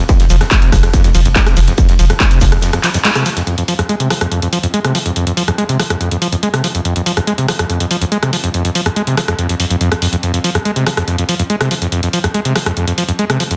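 Hypnotic, industrial peak-time techno at 142 BPM in F minor, cut from a longer piece, opens on a drop where a squelchy, gritty, resonant acid bass riff, bright and up front, runs over a layered electronic kit of handclaps, ride, rim click and pumping hats. A distorted, up-front electronic kick and a deep, thick saturated sub bass with sidechain pumping drive until 2.5 s, and a background acoustic soul kit of shaker, snare and rolled-off hi-hat plays until 3.5 s. A break and band accent then lead into a section where the acid bass rides a filter sweep over the electronic kit, all in a small room with a dense, heavily limited master.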